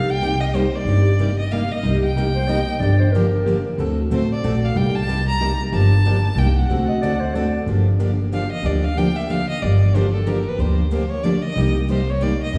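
Acoustic string swing in the jazz manouche style, this fiery yet bittersweet passage in G minor moves briskly at 185 BPM in 3/4 with a swung feel, cut from a longer piece. A bowed violin carries the melody with smooth, even vibrato, then takes a solo from 7.7 seconds as the harmony settles on Gm7 and later Cm7. Beneath it, a boxy parlour-style plugged-in acoustic guitar with fresh strings picks out the accompaniment, joined further back by a bright, full-bodied jumbo acoustic whose finger squeaks surface now and then. A woody, thumpy pizzicato upright bass on gut strings sits up front and anchors the low end. A breathy clarinet with a soft attack and scooped jazz phrasing adds a brief second line at 2.4 seconds and again near 6.9 seconds. The ensemble sits in a reverberant hall-like space with a long, wet tail.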